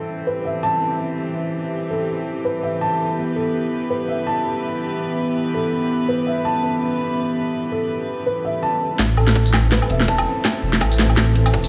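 The recording has a spacious, heavy sound, with light digital ambience and the stone-room reverb of a big sound system playing in a bare room. This half-time drum and bass excerpt, cut from a longer piece, moves at 165 BPM in A minor with a swung sixteenth-note feel. It opens with a chamber string section bowing soft-attack, floating sustained chords over Am and Em, low-pass filtered and pumping from sidechain compression. Alongside the strings, a felt-muted upright piano plays mellow, intimate arpeggios through a low-pass filter and delay. At 9.0 seconds the build-up begins: a deep, rumbling detuned saw bass comes in up front, and a layered electronic kit with cracking snare, bright hats, tambourine and woodblock plays a fill with overdrive and filtered percussion, backed by a tight, overdriven electronic kick set farther back. Meanwhile the piano is swept by a filter until the close at 11.7 seconds.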